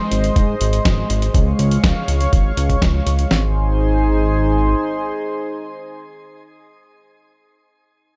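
Italo disco at 122 BPM in Ab major, playful and danceable, where a smooth, slow-attack analog pad with chorus and shimmer reverb sustains chords over Ab, Db and back to Ab while a glossy, detuned pulse-and-sawtooth synth bass plucks up front until 4.7 seconds, and a gritty, tape-warm sampler-style kit with a thumpy kick, medium-tuned snare and hi-hat drives until about 3.4 seconds, leaving the pad alone in a dark, lightly reverberant digital ambience in this short cut from a longer piece.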